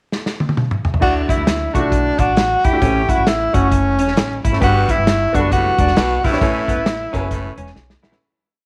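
This short, uplifting piece of uptempo 1960s-style soul opens with a drum fill on a dark, smooth kit with dark cymbals, a tight kick and a medium-tuned snare, which then settles into an up-front backbeat soul groove. At 1.0 seconds the band arrives with the verse: a breathy tenor saxophone takes the lead with vibrato, scooped notes and a smooth top, spinning a free, jazz-style melody. Beneath it, a woody upright bass plucks a syncopated line with slides and chromatic approach notes, while an upright piano pushes close-voiced chords dressed with grace notes. An electric guitar through a small old amp, slightly broken-up and lo-fi with analog chorus, repeats a picked figure underneath. At 4.6 seconds a raspy, gritty baritone saxophone adds low punctuation, and from 6.4 seconds the whole verse fades out, with a closing drum fill at the very end, all set in a small room with light reverb and a layer of vinyl crackle.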